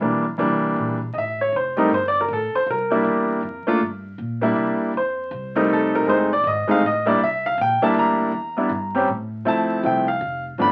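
Crackling like a very old 78 rpm record, with dulled highs and a wet studio ambience, this cut from a longer piece catches a playful, sophisticated jazz piano trio swinging in 3/4 at 159 BPM in C mixolydian, tuned to A4 = 437 Hz. A clear, intimate baby grand piano sits up front and solos from 0.4 seconds, its natural tone, long sustain and audible action noise carrying the melody through chords that move from C7 past F7 and F#dim7 to a brief chord-free moment before Dm7. Beneath it, a woody, growly pizzicato upright bass with steel strings sits low in the mix.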